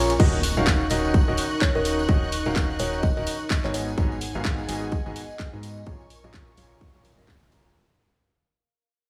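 A clear, intimate concert grand piano riff with audible action noise leads this energetic, bittersweet piano house cut in Eb minor at 127 BPM with a swung 16th feel, over a punchy, tape-warm electronic kick up front, a house drum kit of crash, handclaps and hi-hat, a background tambourine, a hollow, organ-like FM bass, a lush symphonic violin section holding vibrato chords, and an airy, breathy chorused pad, all but the drums and tambourine pumping to the sidechain, while a very quiet electronic impact sounds until 2.1 seconds, a woody kalimba melody with digital delay appears from 1.6 to 3.8 seconds, and the whole passage fades out through Ebm7, Abm7 and Bbm7 in a small room.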